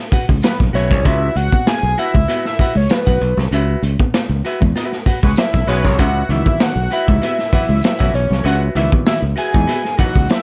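Hypnotic and driving, this 97 BPM funk excerpt in C# minor rides a single C#m11 chord, with a gritty, saturated breakbeat kit and a growly, punchy fingered bass up front, a hollow-body guitar comping above a dark, compressed second guitar riff treated with spring reverb, a fat detuned analog lead with vibrato carrying the melody from 0.4 seconds alongside a jingly tambourine, a distant, roomy horn section slipping in at 5.2 seconds during a band accent, and a stringy overdriven clav stabbing from 6.3 seconds, all in a dark small-room production.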